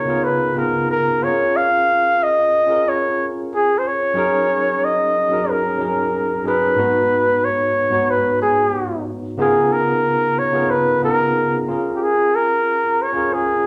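Soul in a silky, smooth mood, this excerpt sets a warm flugelhorn melody, shaped with vibrato and a jazz-style soloist's polish, over clean tine electric piano chords heard through the instrument's built-in speakers, both parts up front and playing together throughout as a band in one room with a lush, large-studio reverb.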